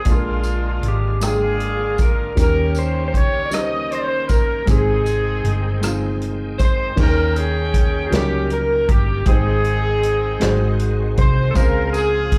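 A slow gospel groove in a straight 6/8 opens with nearly the full band at once: a warm horn section with light vibrato and a dark, clean lap steel played with a slide and volume swells share the melody, both carrying a slapback echo. Beneath them, a mellow baby grand piano with audible action noise and short sustain supplies the accompaniment. A bright, shouting tonewheel organ holds chords in the background through chorus vibrato and a slow rotary speaker. A round, punchy hollow-body electric bass and a natural country drum kit with a boomy kick and medium-tuned snare sit up front, while a jingly tambourine joins at 0.1 seconds, drops out near 6.9 seconds and returns at 11.6 seconds. Heard through a club PA with small-room ambience, this jubilant, hopeful passage is cut from a longer piece.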